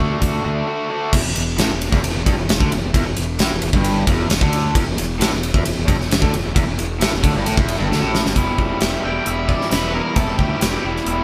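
A gated 80s drum kit sits up front in this gritty, driving classic rock excerpt at 133 BPM in E minor, its fat snare, tight kick and bright cymbals ringing through a big, airy gated room. A raw, double-tracked garage guitar riff with bright overdrive and a punchy, overdriven fingered bass move from a D chord and a brief break onto E minor, and a drum fill at 7.9 s opens the solo section. An octave-fuzz lead guitar enters at 9.1 s with a dark, distorted picked melody, while the band plays live in one room with light reverb.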